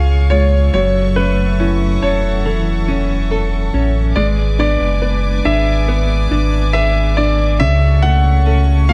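A thick, saturated sub bass sits up front in this melancholic, longing pop excerpt at 70 BPM in F# minor, beneath a clear concert grand piano melody with delay, a woody, slightly detuned upright piano with audible action noise, a direct-recorded clean electric guitar playing arpeggios through tremolo and delay, and distant, floating chamber strings holding soft sul tasto chords, with the mix soaked in dreamy church reverb as the harmony moves from C# through F#m7 and G#dim to F#m/C#.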